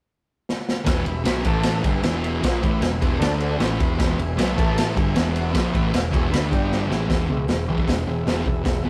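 A thick, double-tracked fuzz guitar drives this swaggering, rowdy garage rock snippet at 154 BPM, its picked riff circling E with brief moves to A5, D5 and G5 over a raw drum kit of punchy kick, medium-tuned snare and dark cymbals that opens with a fill at 0.5 seconds and fills again before the shift to a new section at 7.1 seconds. A growling, overdriven picked bass sits bright and direct beneath, while a mellow vintage combo organ with heavy vibrato holds sustained chords in the background and adds a fill of its own at 6.3 seconds. The rough rehearsal-room sound carries light reverb and tube saturation, with the gritty, saturated drums pumping in their small room.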